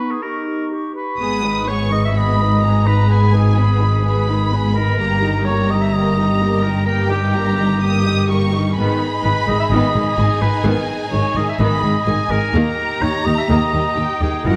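Cinematic and heroic, this adventurous orchestral fragment opens with an airy, hollow small flute group, a distant background clarinet and a mellow, up-front French horn section, while a roomy solo oboe carries a second line throughout; at 1.2 s lush bowed strings take over, with one violin section singing an expressive vibrato melody above a smooth, even second violin line, a softly placed viola section, a rich, focused cello section and a woody double bass section, all set in a moderate scoring-stage reverb.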